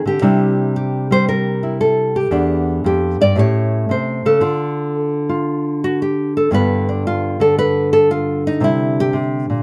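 Swung eighth notes at 114 BPM in 4/4 give this brief solo jazz fragment a sophisticated lilt. A single fingerpicked nylon-string guitar, full-bodied and classical in tone, sits up front and moves through C9, Em7, A7#9, Dm and G7 before settling on Csus2 at 8.6 seconds. Close, detailed miking and light reverb keep the sound intimate and warm.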